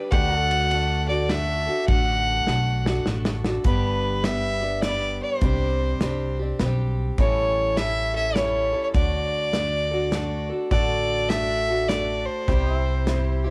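A clear, smooth fiddle sits up front with light vibrato, carrying a sunny, heartfelt honky-tonk melody in a swung 3/4 at 102 BPM over chords moving from D through G, Csus2 and A7. Bright, boxy picked archtop guitar and a woody pizzicato upright bass hold down the accompaniment, while a natural country drum kit with dark cymbals and a punchy kick plays a fill from 2.5 seconds. A clean, compressed pedal steel with volume swells and subtle chorus hangs in the background until 3.6 seconds and returns at 10.7 seconds, with the fiddle, guitar, steel and drums carrying a cassette-tape tint in this light-reverb home recording cut from a longer piece.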